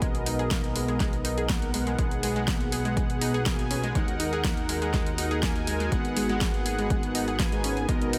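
A straight groove in this progressive house excerpt is driven by a punchy electronic kick that runs to 8.0 seconds, with a deep house kit adding a fat snare and sidechain-pumped hi-hats, while a thick, detuned analog bass pumps underneath. Up front, a smooth, mellow supersaw plays stabs through a low-pass filter sweep and delay, and a round, bright analog pluck spins arpeggios with chorus and delay. Behind them, an ethereal, dark ambient pad holds sustained chords with an octave-up shimmer, phaser and its own reverb. Together they create an expansive, bittersweet mood over light reverb.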